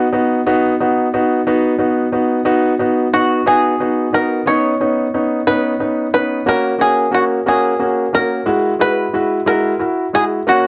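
Heartfelt and tender, this short pop excerpt in B major moves gently at 60 BPM in a straight 6/8, with a clear concert grand piano carrying the accompaniment from the start, its intimate, up-front tone showing audible action noise and long sustain. At 3.1 seconds a bright, twangy bluegrass banjo played with fingerpicks takes the melody, its percussive attack colored by cassette tape and analog delay. The harmony moves from B through Badd9, F# and Eadd9 in a moderate studio ambience with the character of a home cassette recording.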